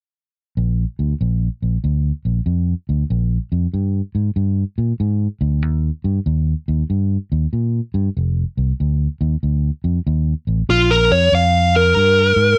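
Lightly reverberant, this laid-back, swaggering electric blues shuffle in Bb mixolydian swings at 95 BPM as a round, punchy fingered electric bass carries the Bb7, Eb and F7 changes from 0.6 seconds before a dark, overdriven lead guitar joins up front at 10.7 seconds for the final stretch of this short cut from a longer piece.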